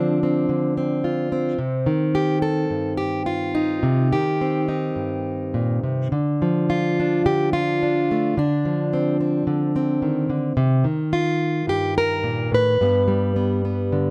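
A lone fingerpicked steel-string acoustic guitar with a dark, full-bodied jumbo tone plays up front from the first moment, moving through Dm7, Cm and Dm before landing on G at 12.8 seconds. This is a reflective, wistful solo folk piece in C dorian, loosely felt around 107 BPM in 4/4 with a rubato pulse. A light reverb surrounds the plugged-in guitar through this short passage cut from a longer piece.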